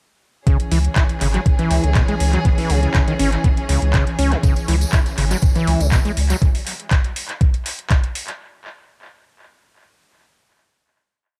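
Driving and trippy, this short acid house piece at 121 BPM in C# minor sets a thumpy, up-front four-on-the-floor kick in a small room under an analog drum machine's metallic hats and claps with tape echo, a squelchy, resonant sawtooth acid line with accents, slides, overdrive, chorus and tape echo, a deep saturated sine sub bass on the off-beats, and bowed chamber strings holding sustained C#m chords with vibrato, the acid line, sub and strings all pumping, while a jingly tambourine joins at 4.4 seconds and the drums carry on alone from 6.4 seconds to the close at 8.4 seconds in a dry, echo-heavy mix.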